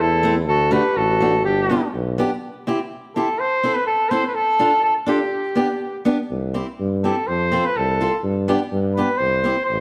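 Jolly and bouncy, this alpine folk dance-band passage at 124 BPM in 2/4 moves with a rubato feel in C major, as a clear flugelhorn with light vibrato carries the melody from a roomy distance over a boxy, fingerpicked archtop guitar with fresh strings and audible finger squeak, while a warm clarinet adds a brief second line and an up-front tuba holds the bass until 2.3 seconds, then returns at 6.3 seconds, all set in a recital hall's reverberant space.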